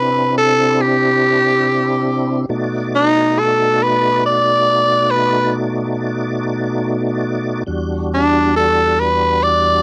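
From the first moment, a raspy, growling tenor saxophone and a tonewheel organ sound together in a smoky, mournful slow blues in 12/8, a short fragment cut from a longer piece. The saxophone takes the solo up front in a jazz style, its bright, gritty tone carrying a vibrato as it sings the melody. Beneath it, the organ holds full, sustained chords, lightly overdriven and colored by chorus vibrato and a slow rotary speaker, sitting somewhat lower in the balance than the horn. The harmony moves from C to a tense B7#9 at 2.5 seconds before settling onto Em7 at 7.7 seconds. The dry, close sound of a 1970s-style studio keeps both instruments present and intimate.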